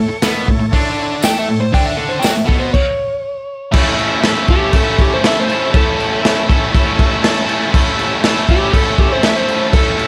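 A crunchy breakbeat drum kit sits up front in this rowdy, swaggering garage rock cut, its tight kick, medium-tuned snare, dark cymbals and saturated, gritty grain driving a straight 4/4 at 120 BPM in A mixolydian. Beside it, a biting, overdriven electric guitar pounds out a bright, double-tracked riff in the low and middle register. An electric slide guitar, dark and slightly broken-up and played with fingerpicks, carries the melody and opens with a solo, while a jingly tambourine shakes in the background only until 2.3 seconds. The band hits a stop at 2.7 seconds before pushing on. Underneath, a very quiet, buzzy vintage combo organ holds clean sustained chords with heavy vibrato and steps out for a brief fill at 6.7 seconds. Light reverb and studio ambience give the whole thing a close, live-in-the-room feel.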